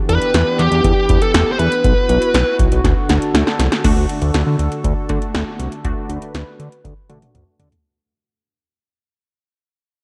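Lush hall reverb surrounds this dark, melancholic, nocturnal synth-pop excerpt at 120 BPM, where a shimmering, retro pulse-width pad holds sustained chords over Em7, Bsus4 and D. A fat, detuned sawtooth bass and a dry, punchy analog drum machine with a deep kick, metallic hats and tom fills sit up front, while a dark, distorted, picked electric lead guitar carries a short bluesy melody until 2.6 seconds. At 3.8 seconds a bright, wave-folded polysynth comp with a funky filter pluck joins as a filter sweep plays and the music begins to fade out.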